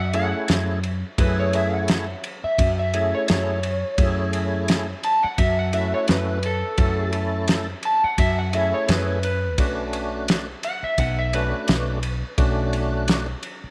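A straight-eighth soul blues groove with a light sixteenth-note swing is set by an up-front, gritty drum kit with a fat snare, tight kick and dark ride cymbal, alongside a round, punchy fretless bass given a lush chorus. Over this smoky, brooding bed, a dark, slightly broken-up electric slide guitar takes a solo throughout, while a full tonewheel organ with light overdrive, chorus vibrato and a slow rotary speaker sits beneath. The harmony rests on F#m9 before moving to Bm9 at 9.6 seconds, all placed in a moderate spring reverb and small room ambience in this short cut from a longer piece.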